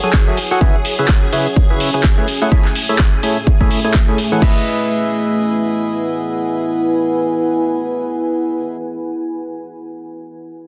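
Piano house at 126 BPM in E major, this uplifting, euphoric passage cut from a longer piece moves with a swung sixteenth-note feel through rich chords from F#m9 to C#m7 and Amaj7 before landing on Emaj7 at 4.4 seconds. A hollow, percussive organ stab drives the riff up front, its fast attack and decaying tone colored by subtle chorus, delay, ring modulation and sidechain pumping, with a filter sweep running over it through the opening 4.4 seconds. Alongside it, a deep, moody ambient pad of detuned unison sawtooth and sub octave sine holds a dark, sustained texture up front with chorus, built-in reverb and pumping for the full 9.0 seconds. A shimmering, vintage string machine of bright violins sits in the background with ensemble chorus, sustaining chords until it stops at 4.4 seconds. The punchy, layered electronic kick and an overdriven analog drum machine with crash cymbal, handclaps and hi-hat play together only until 4.5 seconds, leaving the organ and pad to carry the second section. 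A moderate room reverb and a dense, heavily limited modern master give the whole a full, polished sound.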